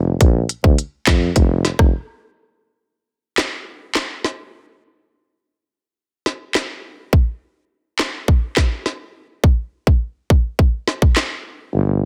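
A breathy, close-miked tuba opens this sultry, hypnotic dancehall clip at 104 BPM in a straight 4/4, sitting up front in a low register with jazz-style vibrato and scooped notes. An electronic island pop drum kit joins at 0.2 seconds, built from a tight kick, a woody snare, smooth hi-hats, rim clicks and handclaps, all placed prominently in the mix. The tuba steps away at 1.9 seconds, leaving the produced drum groove to carry the hypnotic pulse alone for most of the clip. The drums stop at 11.3 seconds, and the tuba returns briefly at 11.7 seconds to close the cut-off passage. The sound is dry and close, with a dense, heavily limited modern master.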